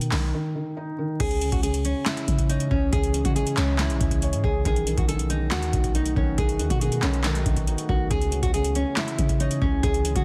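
A dense, heavily limited modern mix with vinyl crackle and digital ambience frames this brooding, dark trap excerpt in C# minor, moving at 139 BPM with a half-time feel over chords of C#m and B7. An overdriven analog drum machine sits up front with a deep kick, crisp snare, metallic hats, handclaps and crash, joined by a clean, boomy sine 808 bass and a soft, thick-felt upright piano, all sounding from the start before a break at 0.3 seconds. At 1.2 seconds a full-bodied, fingerpicked nylon-string guitar takes the melody, and from 2.2 seconds a detuned sawtooth pad with chorus and reverb hovers in the background.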